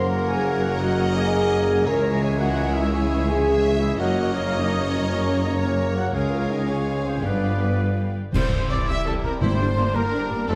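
A full orchestra opens this soaring, heroic adventure score at once, in a broad 12/8 lilt at 112 BPM, with a warm, lush violin section carrying the expressive melody on soft-edged, vibrato-rich bows. Around it, a second violin line, a mellow, hollow concert flute and a clear solo clarinet weave supporting lines in the background, while a focused, distant viola section fills out the accompaniment. The brass builds a solid core: dark, roomy French horns and very quiet bright trombones hold sustained chords, tight trumpets add stabs, and a vintage-toned tuba joins rich cellos and double basses on the bass. The harmony moves from Gb through Dbm and Db to a G7 that turns toward C, and at 8.3 seconds a full-band accent lands as clash cymbals, concert bass drum and articulate, hard-mallet timpani enter after the clarinet drops out at 8.2 seconds. A generous scoring-stage reverb gives the strings and brass a spacious, cinematic bloom in this short cut from a longer piece.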